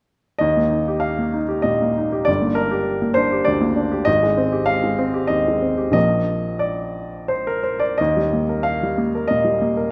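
A clear, polished baby grand piano sits up front in a moderate scoring-stage reverb, playing a brief, lyrical passage cut from a longer romantic character piece for solo piano. In 3/4 at a rubato 86-101 BPM in Eb major, the solo piano spans G1 to F5 from 0.4 to 9.9 seconds, moving through Eb, Gm, Abmaj7 and Bb before settling back on Eb at 8.0 seconds, with a warm character.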